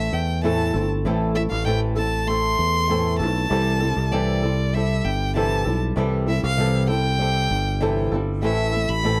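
A tender, wistful pop fragment opens with a clear, focused bowed violin singing the melody with vibrato over a dark, fingerpicked flamenco guitar, whose finger squeaks can be heard, and a round, punchy fingered electric bass. The three parts play together throughout the brief 9.2 seconds in a straight 4/4 feel. Close, detailed miking with little reverb keeps the solo violin, acoustic guitar and amped bass intimate and up front.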